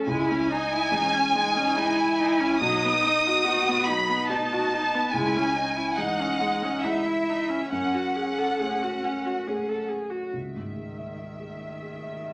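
A felt-muted upright piano, an expressive solo cello with vibrato and portamento, and a focused solo viola open this longing, melancholic neoclassical piece in C# minor at a rubato 71 BPM in 3/4, joined almost at once by a lush, up-front symphonic violin section carrying the high melody over the piano's dark, intimate accompaniment, with the viola dropping out at 10.3 seconds as the chords turn back to C#madd9, all bathed in a wet studio reverb.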